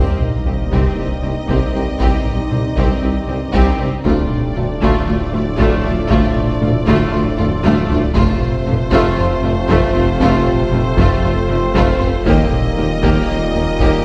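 Set to a straight 4/4 pulse at 117 BPM, this vast, relentless cut of a hybrid orchestral and electronic film score in C dorian opens on a huge, bright sub drop impact before a hard-stick taiko ensemble enters at 0.2 seconds and fills around 7.4 seconds, while a distant, focused studio violin section carries the high melody over a lush second violin line and smooth, even background violas, and clear, punchy French horns, mellow trombones and a cloudy, wave-folded granular pad sustain chords moving through Cm, Dm, F and Eb; very quiet cellos, studio double basses, a soft-attack tuba and a deep, clean sine sub bass anchor the low end, and the sound sits in a wet scoring-stage reverb heard from further back in the room.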